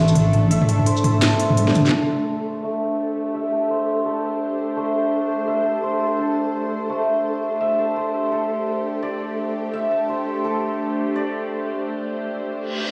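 A shimmering, hammered santur plays arpeggios in A minor throughout this dark, cinematic half-time drum and bass excerpt at 169 BPM, over a tense, string-like drone with phaser and vibrato and a grainy, flickering texture in the background. A deep wobble bass with chorus sounds only briefly at the start, while an electronic kit with a cracking snare and crisp hats plays the opening drop and a fill before stopping at 1.9 s, after which a filter sweep runs across the santur. A break arrives at 11.9 s, and a reverse cymbal sounds at 12.7 s, all set in a huge stone-room ambience.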